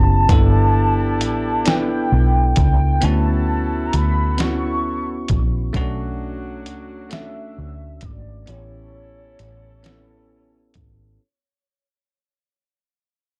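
A velvety synth lead opens this tender, intimate slow R&B excerpt in six-eight, its sustained, chorused tone carrying the melody high over a bell-like tine electric piano and a round, foam-muted fingered electric bass that sits up front. From 0.3 seconds a compressed, gritty sampler-style drum kit joins with a thumpy kick, medium-tuned snare and hi-hat, sounding tape-warm, as if re-recorded in a large room, and placed close. A mellow horn section adds soft-attack stabs with light vibrato in a vintage jazz style, kept low beneath the other parts. The lead drifts through tape echo and gentle vibrato as the harmony moves from G6/9 to Dmaj13, Bm9 and A9. The production is dark and dry, and the whole passage fades out across its length before ending at 11.2 seconds.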